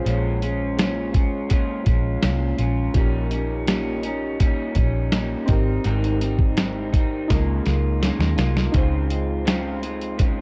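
A dry, gritty cassette-tape recording with little reverb carries this laid-back, sunny indie and bedroom pop excerpt at 83 BPM in Db lydian, moving through Bbm7, Eb7/Bb, Abmaj7 and Db6 before settling on Dbmaj7 at 8.7 seconds. Up front, a dusty, compressed sampler-style soul kit with a thumpy kick and medium-tuned snare sits beside a dark, round, foam-muted picked bass with tube saturation, and the drums play a fill from 7.3 seconds. A slightly broken-up, fingered electric guitar through a small old amp adds lo-fi colour with lush chorus and warbly pitch drift, while analog keys blend pulse and sawtooth tones with a filter sweep, a fast, decaying attack and chorus.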